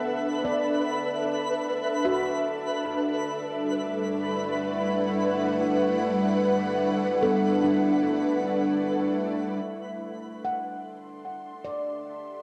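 A hazy, tape-worn home recording bathed in a wet spring reverb carries this melancholic, serene ambient passage, cut from a longer piece and played in free time. An ethereal, airy pad sits up front, holding sustained chords with slow attacks and long releases, thickened by ensemble chorus as the harmony moves from Dsus2 to Gmaj9 and settles on D9sus4. Alongside it, a handpan plays meditative arpeggios, its bright nitrided steel struck with sharp finger strokes and trailed by analog delay. A twinkling granular texture sparkles high above with an octave-up shimmer until 9.7 s, and a calm, nasal organ-like drone enters at 3.9 s and stops with it. The pad and handpan carry on together to the close at 12.4 s.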